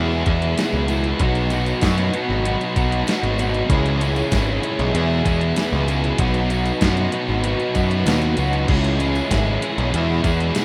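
A gated digital drum machine sets a straight, steady pulse from 0.3 seconds, its thumpy kick, gated snare, hi-hat and crash giving this brief indie rock clip a sampler-style, 80s sheen, while a very quiet, jingly tambourine sits distant in a large room behind it. Underneath, a fuzz-soaked picked electric bass sits up front, direct and amped, anchoring the jangly, upbeat mood. Two overdriven electric guitars play picked riffs, one biting and the other crunchy, with the crunchy part thickened by ensemble chorus and slapback echo. A hollow, flute-like pad with a nasal, detuned edge holds soft, dark chords with chorus in the background. The harmony cycles through E, B and C#m7, and a moderate hall reverb wraps this rough home demo mix.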